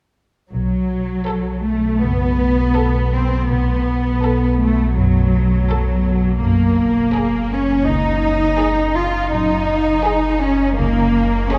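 Tense and mysterious, this cinematic suspense cue at 82 BPM opens at 0.5 seconds with a rich, up-front bowed cello section and a lush double bass section in the background moving from B5 to F#add9, while from 1.3 seconds a deep, rumbling, detuned drone with its own reverb and a soft-attack, expressive violin section join, all bathed in a cavernous cathedral reverb.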